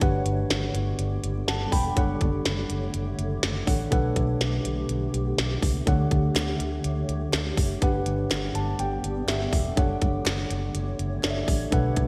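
Over a lightly swung 16th-note groove, a glitchy electronic drum kit with a tight kick, tiny snare and clicky hats sits up front, treated with gated reverb, while a round, punchy, foam-muted fingered bass holds down the low end in this nostalgic, uplifting 1980s-style pop fragment. A mellow tine electric piano carries the Gmaj7, Dmaj7/F#, Bm7 and Dmaj7 changes with short fills, starting with one at 1.2 seconds, as a blurred, evolving granular cloud pad with subtle chorus hovers beneath. Crisp, saturated group handclaps slip in at 6.4 seconds in the background, all framed by a lush hall and bright digital sheen.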